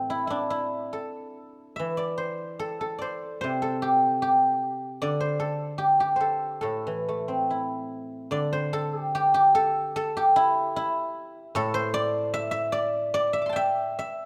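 A solo guzheng, played with fingerpicks and placed up front, carries this contemplative, longing fragment of Chinese traditional music, its silvery, ringing tone spanning low to high registers in a free, rubato duple metre. A moderate reverb gives the plucked strings a sense of space, and the short passage, cut from a longer piece, moves into a new section at 8.3 seconds before closing at 14.3 seconds.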